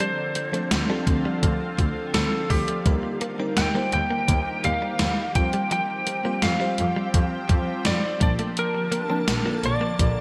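A gated drum machine sets a straight 4/4 pulse at 84 BPM, its thumpy kick and gated-reverb snare sitting up front alongside hi-hat and tambourine in this glossy, romantic 1980s-style pop excerpt in Bb major. A lightly driven lead guitar carries the melody between G4 and G5, its dark, slightly broken-up picked tone compressed and trailed by delay. Beneath it, an FM electric piano with a soft pad layer supplies lush, dreamy accompaniment through chorus and phaser, while a shimmering ambient pad holds sustained chords with an ethereal octave-up sheen. A very quiet, clean electric guitar recorded direct picks a riff, and from 0.7 s a bright, distant bowed double bass adds an intense, vibrato-laden bass line. The harmony moves from Dm7 to Eb, Fsus2 and Bbmaj7, all framed by a lush hall reverb and bright digital production.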